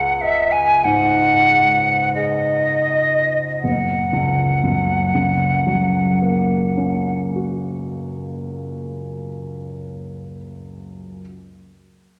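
A bright, airy silver flute with vibrato and soft attacks sings an expressive melody up front over a dark, mellow baby grand piano with long sustain in this pastoral, dreamy impressionist classical excerpt in F# major, drifting at a rubato 38-50 BPM and slowing through its opening 3.6 seconds as a C#sus24 chord settles onto F#, all bathed in a wet concert hall reverb, with the flute falling silent at 7.2 seconds while the piano lingers to 11.2 seconds.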